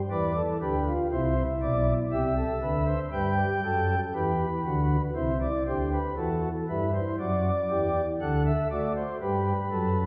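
A pipe organ on soft flute stops, voiced in a romantic manner with tremulant and placed up front, carries this elegant, stately baroque-style three-part fugue in C major at 59 BPM in 4/4. The lone organ spans B1 to G5 over about ten seconds, moving through G7, C, G and D7 before settling on G, a short cut from a longer piece. A wet recital-hall reverb of 1.6 seconds surrounds the sound, heard from further back in the room.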